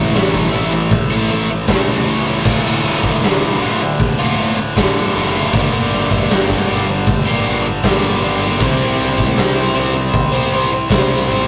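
A rough rehearsal-room recording with tube saturation and a short booth ambience frames this dark, cathartic excerpt of quiet-loud alternative rock in straight 4/4, where a biting, double-tracked overdriven guitar sits up front beside a tight, bright distorted guitar on picked riffs, a fuzzed, amped fingered bass adds grit below, and a huge arena drum kit with a punchy kick, medium-tuned snare, hi-hat and crash joins at 0.1 s, its natural big-room sound pushed forward as the chords move from A through Dm and Gm to C.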